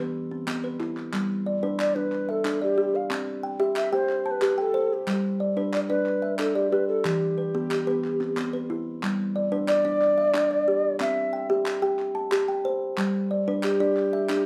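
A dark, woody kalimba opens this rippling, hypnotic piece in southern African traditional style, plucked with the thumb in short, smooth arpeggios of an mbira-style interlocking cycle in a straight 12/8 feel, joined at 0.5 s by crisp group handclaps that sound human in a small room. From 1.8 s a mellow, hollow cedar flute carries the melody up front, its airy tone marked by tongued chiff and vibrato over a cycling progression of E minor, G and C. The band plays live together in one room with light reverb, and the passage moves into a new section at 9.0 s before it is cut from the longer piece.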